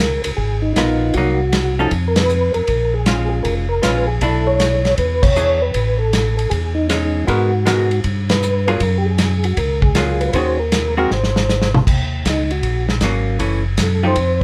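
Soul jazz organ trio with a swinging, bluesy groove, where a soft, flute-like percussive tonewheel organ carries the melody through a slow rotary speaker and chorus vibrato over a fat, lightly overdriven organ bass with key click, a punchy small-room soul drum kit with dark cymbals, and a clean, compressed hollow-body archtop guitar comping from 0.8 s, with band accents punctuating the phrases before a drum fill at 11.1 s leads into an organ solo at 11.9 s, all in a moderate studio reverb with the band playing live in one room.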